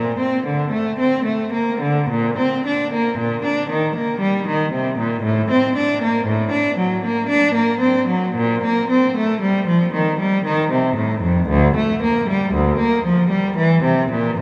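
A single bowed cello opens at 0.0 seconds and carries this brief classical piece alone, a baroque-style suite movement in Bb major cut from a longer work. The mood is dance-like and flowing, moving in 3/4 at around 58 BPM with a rubato feel that lets the pulse breathe. The one player draws a rich, smooth tone with vibrato, keeping the line even as it ranges from D2 up to D4. The cello sits up front, yet its sound carries a distant quality, wrapped in a wet cathedral reverb with a long 5.5-second decay. The passage unfolds as one continuous section until it ends at 14.4 seconds.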